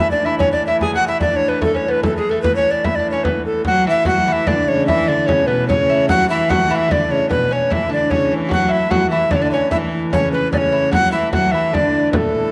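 A triple metre with a straight feel carries this rustic medieval dance, which is cut from a longer piece and has an ancient air. The tenor recorder leads the melody up front, its bright, reedy, airy tone showing a chiff on tongued notes and a touch of vibrato. Beneath it, a fingerpicked lute plays a delicate second line on double nylon strings, while a hurdy-gurdy holds a nasal, smooth-topped drone in the background. A frame drum played with hard hands comes in at 0.4 s, close and dry, and a rich viola da gamba joins at 3.7 s with a second bowed line, its soft attack and light vibrato ringing intimately. The ensemble sits in a moderate recital hall reverb.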